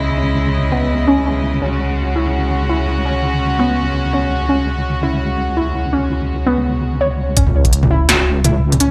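Swung half-time drum and bass at 167 BPM in C# minor sets a heavy, dark mood, opening on a C#madd9 chord held by an earthy, rich chamber string section with vintage 12-bit sampler grit and sidechain pumping. Around it, a warbly, dusty pluck plays arpeggios through chorus, phaser and digital delay under a filter sweep, and a deep, saturated wobble bass sits up front. The strings fall away just before the drop at 7.4 seconds, which lands on C# minor with a knocking, tape-toned electronic kick, an overdriven industrial kit of clanging snare, crisp hats and toms in gated reverb, and a faint sub drop, all framed by lush hall reverb and bright 1980s-style digital sheen in this fragment of a longer piece.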